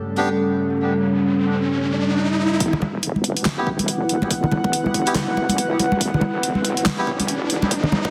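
Dark and cavernous, this deep dubstep excerpt in a half-time, swung feel opens on a deep, moody analog pad with chorus under a filter sweep, while an electronic riser enters just before the first second and builds to the end of the clip, and a reedy, nasal melodica with low-pass filtering and dub echo drops brief stabs. At 2.6 seconds the build-up begins as a heavy, detuned wobble bass sits in the background, joined by a layered, tape-tinged kick re-recorded in a small room and an up-front deep house kit with a fat snare, handclaps and hi-hat. Bright, damped congas with dub echo also enter, and the whole thing is bathed in a lush hall reverb, vinyl crackle and a dense, heavily limited master.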